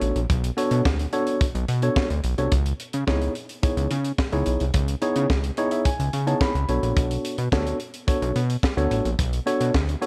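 Early-eighties boogie funk excerpt with a slick, danceable mood, where a fat, detuned sawtooth analog bass with a filter sweep sits up front beside a tight, acoustic funk drum kit with a high-tuned snare and a mellow, clean tine electric piano that adds fills at 5.3 and 9.7 seconds over Bm9 and C#m9 chords, all in a dark studio production.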